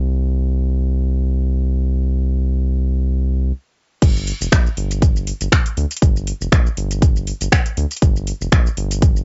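Dry and dusky, this home cassette recording has its top end rolled off above 7.7 kHz, giving it a muffled, late-night haze. It is a short cut from a longer deep house track at 120 BPM in 4/4, with a 55% swing on the sixteenths, tuned to A4 = 439 Hz, and the mood is smooth and nocturnal. For the first section, a round, dark analog bass blending sawtooth and sine plays alone between F1 and D2, with a fast attack, sustained notes, tube saturation and sidechain pumping. After a brief stop, the drop lands at 4.0 seconds. A punchy, layered electronic kick sits up front, and a house kit adds crash cymbal, finger snaps, metallic hi-hats and shaker. The kit's parts are low-pass filtered and tape-warm, mixed low beneath the kick and bass, as if re-recorded in a small room.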